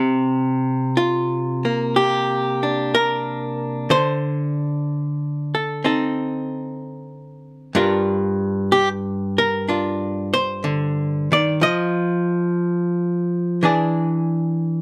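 Cool and smoky, this solo jazz piece drifts at 61 BPM in C minor, with a loose rubato feel and a swung lilt. A single clean, hollow-bodied archtop guitar sits close and up front, its picked, compressed tone moving from Csus2 through D5 and Gm7, passing through a chordless stretch at 11.6 seconds before landing on E7. The recording is dry and intimately detailed, and it is cut from a longer performance.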